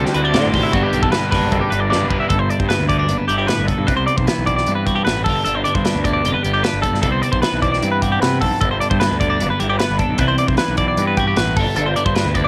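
This wistful, playful slice of math rock and midwest emo opens with two twelve-string electric guitars, a double-tracked overdriven guitar riff and a fuzzed fingered bass all sounding at once, with the drum kit joining a moment later in a straight 4/4. One clean, compressed twelve-string sits up front with a twangy chime, picking chordal accompaniment through a phaser, while the other spins out bright picked arpeggios in a higher register above it. The crunchy overdriven guitar carries the riff only through the opening stretch, dropping out at 2.3 seconds just as a drum fill closes the first section. From there the guitars move through jazzy extended chords, with Gmaj9, Cmaj7 and G9 recurring, as the dark, round, punchy bass and the acoustic kit's tight kick, medium-tuned snare and hi-hat drive the second section in a small room. A cassette tape haze colours the guitars and drums, giving the whole home-recorded performance a lo-fi, intimate feel.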